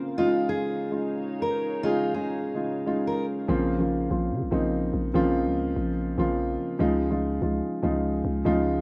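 Dark and melancholic, this short hip hop fragment moves at 145 BPM in 4/4 with a half-time feel, centred on Bb minor and tuned slightly sharp of standard pitch. A dark, mellow concert grand piano sits up front throughout, its boxy, deep-bottomed accompaniment softened by a low-pass filter. In the opening stretch, a glassy, ethereal FM pad hovers in the background with slow-blooming sustained chords, thickened by ensemble chorus and bathed in plate reverb, while a fingerpicked steel-string jumbo acoustic guitar carries a full-bodied melody, also filtered and touched with plate reverb. At 3.5 seconds the pad and guitar have dropped away and a growling, buzzy 808-style bass enters, its sine-based tone striking quickly and then decaying beneath the piano. The harmony shifts from Dbadd9 to Bbmadd9 and back to Dbadd9 at 6.8 seconds, all captured in a rough home demo mix with light reverb, and the piece is cut from a longer work.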